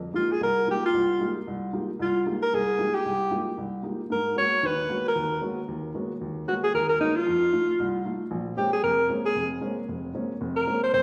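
Hypnotic and intense, this swinging jazz fragment, cut from a longer piece, sets an alto saxophone melody, voiced with vibrato, subtone and scooped notes, over an upright piano accompaniment whose woody tone carries audible action noise. The saxophone enters at 0.2 seconds and sits up front with a distant, roomy quality, while the intimate piano stays lower in the mix. A recital-hall reverb gives the pair a church-like resonance as the harmony moves from Fm11 through Abm11 and F7 to Bbm9 at 8.3 seconds.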